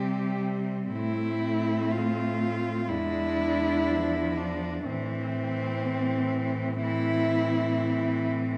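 Four bowed cellos begin together in this tender, lyrical classical excerpt with a rubato feel: a rich, close cello sings the smooth, vibrato-laden melody up front over a focused second line, a clear accompaniment and an even bass with light vibrato, all set in a moderate recital-hall reverb as the harmony moves from C5 to Am, E7 and back to Am.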